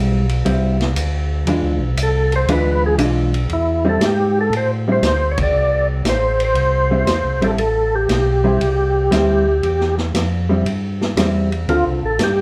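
Heard from further back in a small club with a short, wet reverb, this bluesy, late-night soul jazz organ trio swings at 117 BPM in A minor. A mellow, round tonewheel organ carries the bass line, a dark, clean hollow-body guitar accompanies on a rootless Am7 and an E7b9, and a vintage drum kit with a punchy kick and dark cymbals keeps time. An organ solo opens the recording, with a percussive, lightly overdriven second organ taking the melody from 2.0 seconds through a slow rotary speaker and chorus vibrato, and the band hits an accent at 5.3 seconds.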